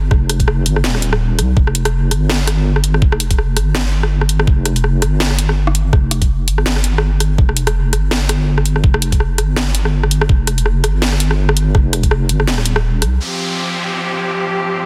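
A swung half-time drum and bass groove in a dark, spacious mood pairs a knocking, tape-toned electronic kick that briefly drops out at 1.2 seconds with an overdriven, layered kit of cracking snare, rim click and bright filtered hi-hats, all over a deep, detuned wobble bass thickened by chorus, until at 13.2 seconds a lush bowed cello section sounds sustained chords with vibrato and sidechain pumping as an electronic downlifter closes this cut from a longer piece under a dense, heavily limited master with light reverb.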